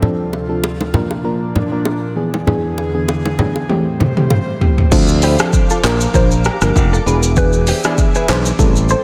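This hypnotic, smooth afrobeats excerpt opens with a warbling FM electric piano, an airy, breathy pad with chorus and ringing, close congas and bongos, before a deep house drum kit with a deep kick enters on a fill at 3.7 seconds, followed by a growly, punchy fingered bass, a woody mallet-like synth pluck with chorus and phaser, and a clean, picked electric guitar riff with analog chorus in the background, all set in a dreamy hall reverb over a Dm7, Bb, E7, Am7 progression that returns to Dm7, Bb and E7.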